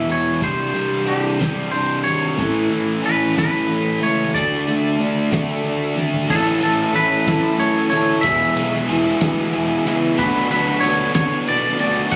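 Captured on a phone in a club-sized room, this compressed, reverberant indie rock clip has a muffled, dulled top end and an upbeat, jangly, straight feel in 6/8. An up-front, twangy, scooped guitar carries the melody through tape echo. Beneath it an overdriven picked guitar and a thick, up-front fuzz guitar, with distortion, subtle chorus and tape echo, play riffs over a gritty fuzz bass and a cloth-damped, thuddy drum kit that sits in the background. After a drum fill at 6.0 seconds, a mellow, flute-like tonewheel organ enters very quietly at 6.3 seconds with sustained chords through a slow rotary speaker.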